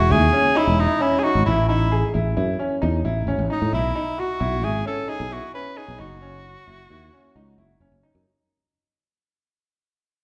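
In a straight 5/4 at 132 BPM in F# dorian, this tense, intricate progressive instrumental fragment sets a clear, up-front tenor saxophone melody with vibrato over brilliant, slightly worn grand piano arpeggios and a growly, punchy fretless electric bass, all bathed in a wet recital-hall reverb as chords move from Emaj7 through A and Bsus4 to F#5 under a fade-out, the saxophone stopping at 7.8 s.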